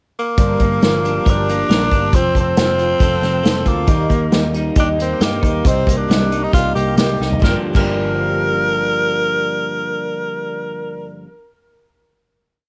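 Reflective and wistful, this short folk rock and heartland rock piece in G minor moves at 136 BPM with a straight feel, as a raspy, gritty tenor saxophone with vibrato and analog delay sings up front in hook phrases over a shimmering, octave-doubled twelve-string acoustic guitar strumming eighths in the background, twangy, slightly broken-up picked arpeggios from an electric guitar through a small old amp, a round, foam-muted picked electric bass driving in eighth notes, and a roomy unplugged drum kit with dark cymbals, a punchy kick and bundle sticks whose fill at 7.2 seconds leads into a held final chord, all captured as a home cassette recording with light reverb.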